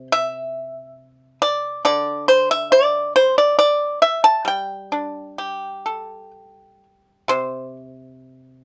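Rubato phrasing loosely follows a 4/4 pulse around 60-70 BPM in this short fragment of traditional Chinese solo music, set in the G zhi mode with a serene, flowing mood. A lone pipa, played with fingerpicks and sitting up front, carries everything from low to high register with a dry, percussive attack, touched by light reverb. A new passage arrives at 7.3 seconds and runs to the close at 8.6 seconds.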